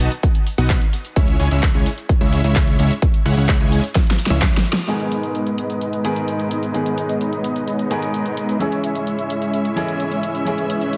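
A straight 4/4 pulse drives this euphoric, emotional slice of festival progressive house. It opens on the drop: a punchy, overdriven electronic kick, entering at 0.2 seconds, sits up front alongside a big-room kit of handclaps, hi-hat, shaker and a huge snare, the whole kit overdriven, while a fat, mellow analog bass pumps beneath a thick, detuned supersaw riff that breathes with sidechain pumping, a low-pass filter and dub echo. A drum fill begins at 4.0 seconds, the kick and bass drop away at 4.5 seconds, and a band accent at 4.7 seconds marks the turn. From 4.9 seconds a clear, intimate grand piano, its action noise audible, takes up the accompaniment with its own pumping and echo, while a smooth, bowed string ensemble holds sustained chords in the background under a filter sweep. The supersaw riff carries through the whole passage, all of it framed by a light digital ambience.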